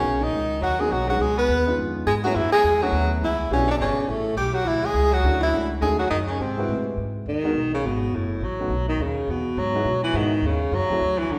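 Swung eighths drive this smoky small-group jazz excerpt at a brisk 208 BPM in 4/4, with a woody pizzicato upright bass up front and a boxy upright piano comping underneath, set in C# minor before shifting to G# minor at 7.0 s. A clear, close-miked tenor saxophone carries the melody with vibrato and scooped notes until 6.9 s, while a distant, roomy baritone saxophone plays a second line and then takes a solo from 7.0 s. The whole group sits in the lush reverb of a recital hall, with about a 1.6-second decay.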